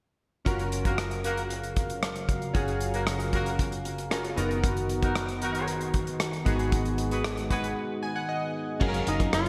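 Glossy, chorused retro synth keys open this uplifting, romantic slice of 1980s-style pop as accompaniment, their detuned pulse and sawtooth tones bright and quick to decay over a steady, straight 4/4 groove. Beneath them a shimmering pulse-width pad holds sustained chords with a slow attack and a sub-octave weight, moving from F#maj7 to Bmaj7/F# and G#m7 before returning to F#maj7. An up-front studio drum kit with a tight kick, rim clicks, hi-hat and crash sits in gated reverb, while a round, punchy foam-muted electric bass stays low and dark. A tight horn section adds clear stabs with light vibrato and delay from 0.9 s, and after a break where the synth keys play a fill, a clean twelve-string electric guitar riff slips in at 8.8 s in the background, joined at 9.1 s by a hollow-bodied archtop guitar melody. The whole piece is cut from a longer track and bathed in a lush hall reverb with a polished digital sheen.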